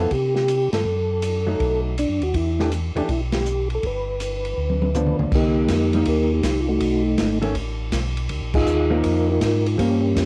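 A swinging 4/4 groove at 161 BPM drives this bluesy, smoky soul jazz organ trio, cut from a longer piece. Up front, a soft, flute-like tonewheel organ with second-harmonic percussion carries the melody through a slow rotary speaker and chorus vibrato. Beneath it, a second tonewheel organ, mellow and round with key click and its own slow rotary, holds the bass, while a dark, compressed hollow-body electric guitar, played fingered, supplies the chords. An acoustic drum kit sits in a small room with a boomy kick, medium-tuned snare, dark cymbals and a rolled-off top, marking the band accents and playing a fill from 4.6 to 5.3 seconds, where the harmony settles into C minor. Light reverb and the grain of a home cassette recording frame the trio.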